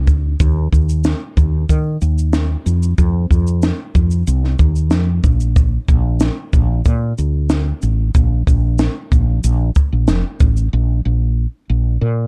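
Easy-going and heartfelt, this acoustic pop excerpt moves at 93 BPM in a straight 4/4, with a round, hollow-body fretless electric bass carrying a subtle chorus up front across the whole clip while a compact cocktail drum kit of tight kick, high-tuned snare and shaker plays with a smooth, rolled-off top in a small room until 10.7 seconds, leaving the bass alone to the end of a dark production with little reverb.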